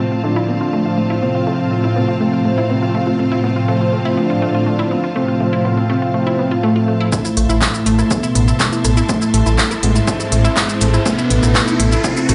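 Hypnotic and melancholic, this melodic techno excerpt moves at 122 BPM in A minor, opening on an F/A chord with a fat, detuned analog lead carrying the melody under subtle chorus and tape echo, while a brassy analog pad plays stabs, a bright, biting symphonic string section holds distant sustained chords, a lush unison pluck arpeggiates in the background, and a cloudy granular pad drifts in at 0.6 seconds, with filter sweeps moving over the pluck and lead and sidechain pumping on the lead, strings, pluck and brassy pad. At 7.1 seconds the harmony settles on Am as a build-up begins, bringing in a punchy, tape-warm electronic kick and a layered deep house kit of handclaps, smooth hats, rim click and shaker, followed at 7.4 seconds by a deep, rumbling detuned saw bass sitting up front. An electronic riser enters in the background at 9.2 seconds, and a moderate concert hall reverb lends a spacious, slightly dull sheen to the whole.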